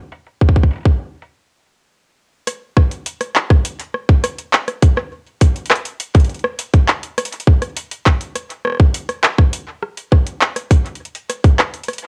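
This IDM excerpt feels intricate and eerie. An up-front analog drum machine plays dry, metallic hi-hats, handclaps and rim clicks, with a low-pass filter on the hats and snare. A tight, tape-warm electronic kick enters at 0.4 s, re-recorded in a large room. Both parts halt for a stop from 1.3 s before a new section begins at 2.5 s, and the whole track has the close, lo-fi grit of a home cassette recording.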